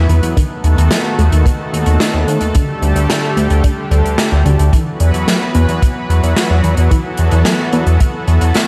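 Nostalgic and moody, this synthwave excerpt in E minor moves at 110 BPM in straight 4/4, its harmony passing through B7/D#, Dsus4 and Esus2. A thick, warbling sawtooth pad with chorus and sidechain pumping holds sustained chords over a glossy, nasal pulse-width synth bass sitting up front, while a full-bodied, detuned unison pluck plays arpeggios with digital delay in the background, shaped by a filter sweep. An airy acoustic big-band kit of hi-hat and medium-tuned snare, treated with gated reverb, pairs with a polished, punchy kick that enters at 0.4 seconds, and the mix sits in a light studio reverb.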